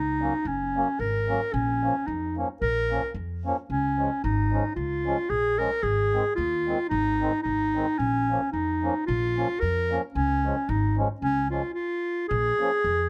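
A lightly swung two-beat pulse drives this jolly, festive alpine dance-band excerpt, where a bright, soft-edged clarinet carries the melody in a classical solo style up front, a reedy, round accordion supplies mellow accompaniment, and a woody, thumpy pizzicato upright bass on gut strings anchors chords moving from Gb through Bbm, Db and Ab, all in light reverb, until a brief stop at 11.8 seconds before landing on Bbm7.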